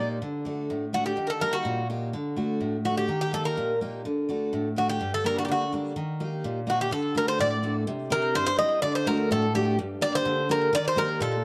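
Greek folk with a tense, driving feel, this clip from a longer piece moves at 126 BPM in a straight 2/4 in D phrygian dominant, tuned slightly below standard pitch at A4 = 437 Hz, with harmony circling between D, Eb and Gm. Up front, the bouzouki carries the melody on metallic, partly octave-doubled double strings with a slapback echo, while a picked dreadnought steel-string guitar supplies full-bodied accompaniment with audible finger squeak. The production is dark under light reverb, and the music turns to a new passage at 7.9 seconds, bringing in a C chord.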